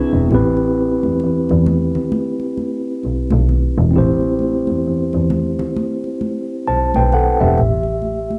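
A mellow, clean tine electric piano opens this late-night, smooth neo-soul and R&B excerpt in A minor at a relaxed 66 BPM in 4/4 with a gentle 16th-note swing, sitting up front through its built-in speakers over an Am7 chord that shifts to A7(no3) at 7.6 seconds. A rich, bowed double bass joins almost at once, its nasal, reedy gut-string tone and boxy period character placed close and forward, while bright, high-tuned congas played with soft hands enter at 0.3 seconds, softer in the mix and carrying the airy ring of a live room. The dry, close 1970s-style studio sound carries only a light reverb.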